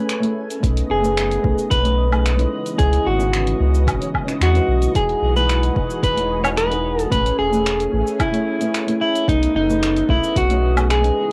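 Blissful and smooth, this sunset chillout excerpt drifts over extended chords such as Amaj9, C#m9 and B13, with an up-front clean electric guitar carrying the melody through cassette-tape grain and tape echo, while a small, thumb-plucked nylon-string guitar and an airy, detuned unison pad with chorus fill in behind. A round, deep sub bass and a punchy electronic kick arrive at 0.6 s, joining a deep house kit of cabasa, finger snaps, woodblock and dark hi-hats, with both drum parts re-recorded in a small room. The piece has a homespun cassette character, set in a modest small-room reverb.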